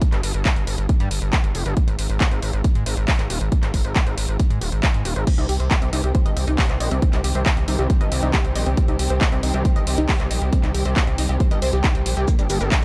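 A dark, warm mix in a digital ambience opens this bittersweet, euphoric slice of uplifting trance, with a tape-warm, punchy layered kick up front and an analog drum machine's crash, handclaps, hi-hat and shaker pumping against it from a larger room. A gritty, saturated sawtooth synth bass with oscillator sync and wave-folding drives underneath from 0.1 seconds, moving through an Ab5 chord toward C minor. At 5.3 seconds a lush, detuned unison pluck with chorus and delay spins arpeggios while a bowed studio string section with vibrato and portamento sustains chords in the background, both pumping with the kick.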